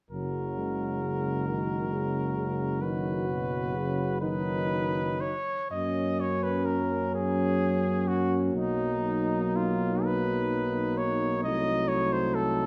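In a slow, rubato 6/8 at 38-45 BPM in dotted quarters, this serene, lyrical hymn-like brass band passage in F# major sets a bright cornet melody with light vibrato up front over a mellow flugelhorn second line, a soft-attacked trombone and a background euphonium in the accompaniment, and a distant, roomy tuba bass, all bathed in recital hall reverb as the harmony moves from F# to a closing Cdim7 at 11.4 seconds.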